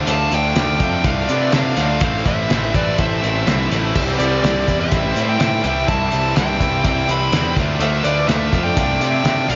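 Classic rock at 124 BPM in C major with a sunny, swaggering mood, this excerpt cut from a longer piece sets two bright, picked distorted guitars riffing in the background, one with slapback echo, over an up-front round, punchy fuzz bass and a cloth-damped, thuddy drum kit with a fat snare and muffled, dark cymbals, while a dark, smooth lead guitar with slapback echo carries the melody and a softer overdriven guitar adds a second line, a barely audible swirling, phased string machine holds sustained chords, and a lush hall reverb gives the whole a big arena sound over a Dm, Am, C, Dm progression.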